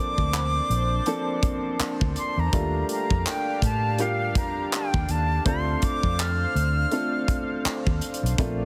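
Contemporary R&B with a dreamy, romantic feel and a lazy swing, where an airy, vibrato-laden silver flute carries the melody through tape echo over clear, intimate grand piano with audible action noise, a shimmering chorused pulse-width pad, a round, foam-muted vintage bass and a tight, polished drum kit of kick, hi-hat and handclaps, while a delicate, bell-like celesta enters in the background at 2.2 seconds, all within small-room ambience and a heavily compressed radio sound.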